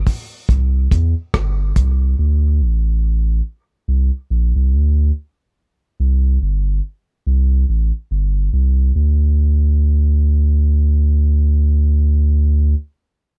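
A dry sound with little reverb frames this hypnotic, meditative dub reggae excerpt at 71 BPM in 4/4 with a swung sixteenth feel, where a deep, round, sine-like sub bass sits up front from G1 to E2 across the whole 12.7 seconds while a dark, smooth acoustic reggae kit with a rolled-off top, built from a tight kick, rim click and hi-hat, plays only from 0.1 to 2.0 seconds, and the piece moves into a second section at 9.0 seconds.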